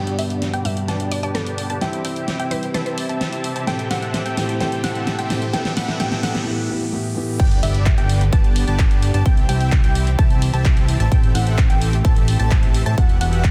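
Anthemic, uplifting festival progressive house at 129 BPM in G major, where a dark, boxy concert grand piano with tape echo and sidechain pumping, distant reedy strings, a lush unison pluck arpeggio, a huge detuned supersaw riff under a filter sweep, a woody mallet-like synth melody with chorus, a very quiet riser and impact and a big-room kit with a huge snare and drum fill build toward the drop at 7.4 seconds, where a fat, saturated analog bass and a punchy, up-front kick drive the G, C, Am7, Emadd9 progression through a dense, heavily limited master.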